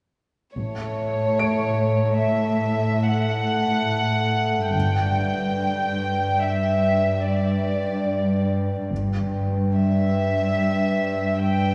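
Cinematic and eerie, this tense excerpt from a longer piece moves in a straight 5/4, its harmony shifting from A to G. A dark chamber violin section carries the melody up front, bowed sul tasto with light vibrato and a soft attack that gives it an intimate, smooth-topped sound. Beneath it, a close cello section adds a warm, vibrato-rich bass line, while a double bass section, also bowed sul tasto, sits in the background until it drops out at 9.7 seconds. A glassy, ethereal glass harmonica holds pure, slow-blooming chords with a dry, full presence. Between 1.4 and 4.8 seconds, a clear but worn baby grand piano adds open, high-register texture in the background, and a long church reverb surrounds the ensemble.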